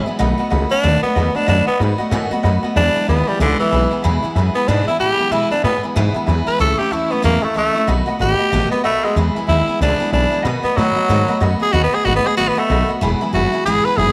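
A swung rockabilly groove at 187 BPM in 4/4 drives this upbeat, rowdy passage in E major, cut from a longer piece. A raspy tenor saxophone takes the solo from the first moment to the end at 14.1 seconds, up front with a gritty, punchy edge, vibrato and a slapback echo. Beneath it, a pizzicato upright bass thumps out a dark, woody low end. A picked steel-string acoustic guitar adds a full-bodied dreadnought picking part, finger squeaks included. A detuned, jangly honky-tonk upright piano sits high and low in the mix with short, vintage plinks. The chords cycle through B7, E and A in a small room with light reverb.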